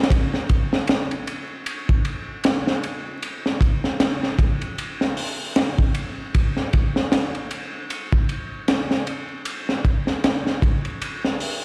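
Smoky and brooding, this trip hop excerpt at 77 BPM in 4/4 with a 58% swing on the sixteenths features only a crunchy breakbeat drum kit of hi-hat, kick, ride and snare, its gritty, saturated sound set up front with dark cymbals, a high-tuned snare, a tight kick and a rolled-off top, heard through light reverb as if played on a big sound system in a bare stone room beneath a layer of vinyl crackle for about 11.6 seconds.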